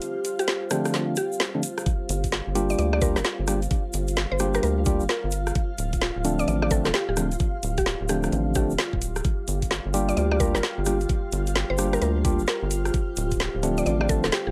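Late-night and skippy, this two-step UK garage excerpt opens on silky string-machine chords, a moody pad, a grainy shaker and garage drums with a woody snare and metallic hats. Within the first second, woody mallet-like plucks carrying the melody through tape echo and clean tine electric piano stabs join them, before a knocking kick at 1.9 seconds and a rubbery, bouncy square bass at 2.1 seconds enter with sidechain pumping on the bass, strings and pad as the chords move between Dm7 and Gm7.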